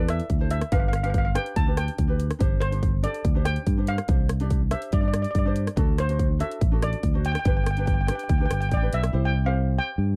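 Calypso with a sunny, festive mood, this short passage is cut from a longer piece and moves in a straight four. A bright, shimmering steel pan carries the melody, struck with hard rubber sticks for a metallic, mid-forward lead. Beneath it a light, fingerpicked acoustic ukulele with a warm tone supplies the accompaniment, while a fingered electric bass sits up front with a warm, direct, amped tone. An electronic big-room dance kit, layered and produced, adds hi-hat, rim click and a punchy kick, then stops at 9.1 seconds as the harmony settles on C. The dry, close sound recalls a 1970s studio, with little reverb around the players.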